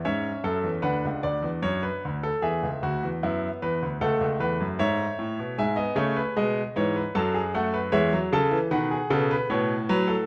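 Classical in a baroque style, this short excerpt from a longer piece presents a four-part fugue for solo grand piano, joyful and stately in mood. It moves at a measured 76 BPM in 4/4 with a straight feel, tuned slightly above standard pitch at A4 = 441 Hz. The piano sounds clear and natural, placed up front by close, detailed microphones, and its writing spans from C#2 up to A5. The harmony begins on A, then moves through Bm, E7, A/C#, E/G# and F#m7 before reaching B7 near 8.7 seconds. A moderate recital hall reverb lends the instrument a sense of space.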